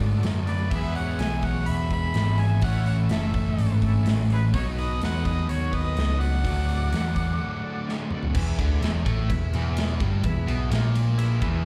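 A growly, punchy overdriven electric bass sits up front in this driving, raunchy blues rock and southern rock excerpt, joined by a double-tracked fuzz guitar riff and a big acoustic rock kit with a punchy kick and bright cymbals, while a clear, close-miked harmonica carries the melody with scooped notes and light vibrato from 0.5 to 7.9 seconds over a dark, overdriven lead guitar with a parked wah in the background and a thick, gritty tonewheel organ holding sustained chords through a slow rotary speaker, the organ taking a fill at 7.4 seconds and a drum fill following before the closing section, heard as a live club gig through the venue's PA.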